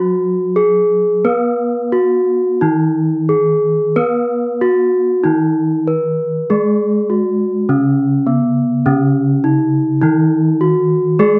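Ceremonial and serene, this short gamelan excerpt moves at 87-103 BPM in a straight 4/4, tuned slightly below standard pitch. A bronze metallophone struck with a wooden mallet carries the melody up front, its ringing, metallic tone sitting mid-forward, while a second metallophone played with a horn mallet supplies a darker, smoother accompaniment in a lower register, its paired tuning producing shimmering beats. Both play throughout, the passage shifting into a new section at 7.7 seconds, captured in a dry, close 1970s-style studio sound with light reverb.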